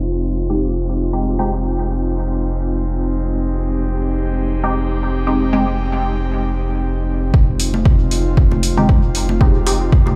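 A swung 4/4 pulse at 116 BPM in F minor carries this hazy, meditative dub techno piece, where an airy, breathy pad with chorus holds an Fm7 chord over a clean, deep sine sub bass, both pumping to the sidechain, while muted, detuned sawtooth chord stabs with phaser and dub echo recur as a filter sweep runs until an overdriven, punchy kick arrives at 7.3 seconds, joined by metallic hats and background electronic congas and toms, the mix sounding as if played through a big sound system in a bare room.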